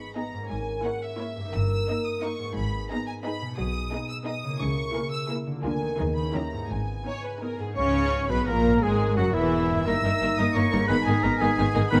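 Urgent and dramatic, this orchestral excerpt in triple time moves with a flexible, rubato feel. Distant, lush violins carry the melody high above a second violin line that sits in the background, while a rich viola section supplies bowed accompaniment and a ringing concert harp plays arpeggios from the start. At 0.5 seconds the bass arrives, with a cello section in the background and a smooth-topped double bass section anchoring the low end. At 7.8 seconds the winds join with their own second lines: a pure, hollow flute, a solo oboe with light vibrato and a very quiet, clear clarinet, while a mellow, roomy French horn section holds sustained chords far back. The harmony circles a minor home chord coloured by half-diminished and dominant chords, heard in a moderate scoring-stage reverb through close, detailed microphones.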